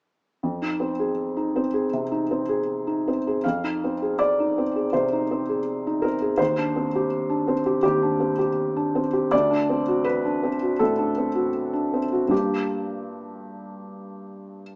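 A felt-muted upright piano begins alone at 0.4 seconds, its soft, intimate tone sitting up front with the audible noise of its action close to the ear. This short, melancholic passage of neoclassical minimalist piano, cut from a longer piece, moves in a reflective 4/4 with a rubato feel. The single instrument ranges from D2 up to F5, and its thin felt gives the notes a mellow, boxy character. The harmony moves from Fm7 through Cmadd9/Eb and D7 before settling on Gm7 at 12.3 seconds, with a shift in the music's section at 3.4 seconds. A moderate stone-room reverb surrounds the playing, and the whole has the feel of a live take heard through a small speaker.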